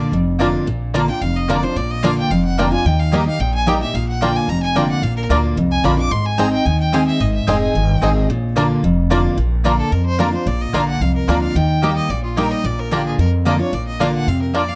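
Driving at 221 BPM in a straight 4/4, this joyful, lively bluegrass piece in Bb mixolydian is cut from a longer performance. A clear, focused fiddle with light vibrato carries the melody, taking a solo from the start until 9.4 seconds and reaching as high as D6. Up front, a bright, full-bodied picked steel-string acoustic guitar supplies the accompaniment, while a thumpy, woody pizzicato upright bass anchors the low end. A twangy bluegrass banjo played with fingerpicks adds percussive arpeggios, and a double-strung mandolin sits in the background with picked stabs. The harmony moves among Bb, Eb and Ab, framed by a dark, warm production with light reverb.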